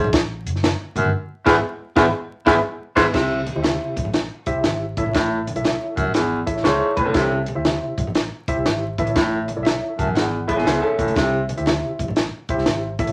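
A breathy baritone saxophone leads this joyful, danceable 1960s-style soul fragment, playing a jazz-style riff up front with subtone, vibrato and scooped notes until 11.4 seconds. Beneath it, a round, foam-muted fingered bass and a compact cocktail kit with a punchy kick, high-tuned snare, hi-hat and dark-toned crash drive an uptempo 120 BPM swing in 4/4, while very quiet, bright, thin-skinned congas add extra pulse. From 1.5 seconds a worn, slightly out-of-tune tine electric piano joins up front, lightly overdriven through its built-in speakers, adding fills along the way. A slightly broken-up, picked electric guitar sits in the background, playing brief riffs. After a band accent on an E/G# chord, the harmony settles at 3.1 seconds into an alternation between C and A, all wrapped in a wet studio reverb and a layer of vinyl crackle.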